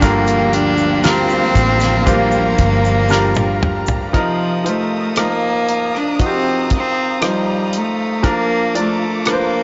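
A heartfelt, emotional pop ballad moves at a slow 58 BPM in a straight 4/4, heard as a short cut from a longer piece. Up front, a solo bowed cello carries the melody with biting, intense vibrato, while a brilliant, woody upright piano supplies accompaniment throughout and a dark, lush studio string section holds sustained chords in the background. For the first 4.1 seconds a focused symphonic cello section adds a second line, a round, foam-muted electric bass anchors the low end, and a grainy egg shaker sits far back in the mix. A dry, mid-forward 70s drum kit with a fat snare and tight kick plays hi-hat, rim click and toms, and its kick and snare are softly clipped; a drum fill runs from 3.1 to 4.1 seconds. The harmony moves from Gm7 to F7sus4 and then to Bb/F, all in light small-room reverb, and the whole recording sounds blown-out and overdriven with a dull, capped top end.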